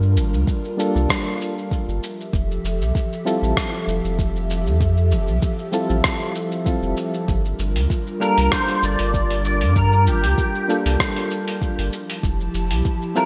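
Soft, round electric-piano-like synth keys with chorus, tremolo and digital delay open this relaxed sunset chillout excerpt. They play alongside an airy, breathy pad with a dark, detuned edge and a deep, warm sub bass sitting up front. A gritty, compressed sampler-style kit of hi-hat, rim click and shaker, wet with gated reverb, sets a lightly swung 97 BPM groove in G dorian, and a layered electronic kick joins at 0.5 seconds. The harmony moves smoothly between Gm7 and Fmaj9. At 8.2 seconds a clean, twangy pedal steel guitar takes the melody up front, played with fingerpicks, slide and volume swells and treated with ensemble chorus and digital delay. A lush hall reverb and a bright 1980s-style digital production give the whole a glossy, spacious sheen.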